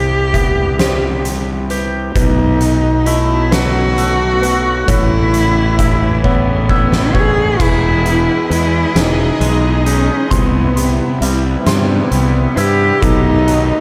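A rich, bowed cello opens this soaring, hopeful post-rock excerpt up front, its expressive melody shaped by vibrato, portamento and a soft attack. Beneath it, a fuzzy, punchy fingered electric bass drives the low end, while a felt-muted upright piano with audible action noise and a twangy, clean electric guitar trace arpeggios in the background, both touched by analog delay. An oversized, low-tuned acoustic drum kit arrives at 0.3 seconds with a boomy kick, fat snare and dark, gritty cymbals pumping in a big room. At 2.2 seconds a swirling, detuned sawtooth pad enters with a slow attack, its bright sustained chords colored by phaser and chorus. The slow 6/8 pulse at 44 BPM carries the harmony from Cmaj7 through B7 and Aadd9, and a drum fill leads into a second section that opens on Emaj7 at 7.6 seconds. The whole mix is dreamy and soaked in a lush hall reverb.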